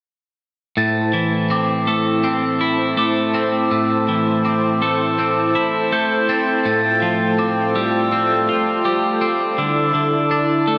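A straight 4/4 pulse at 82 BPM carries this cinematic, cathartic rock passage in A minor, cut from a longer piece. From 0.8 seconds a twelve-string electric guitar picks clean, twangy arpeggios in the low and middle register, compressed and up front, with analog delay trailing each note. Above it, a glockenspiel struck with rubber mallets rings out bell-like arpeggios in a mellow, soft voice, close-miked and also fed through analog delay. A brassy analog pad built from detuned sawtooth tones holds sustained chords with a slow attack, shimmering through chorus and tremolo. The harmony moves from Am to Fadd9/A at 6.7 seconds and Dsus2 at 9.6 seconds, and the whole dreamy mix is soaked in a lush hall reverb that lets every part bloom until 10.8 seconds.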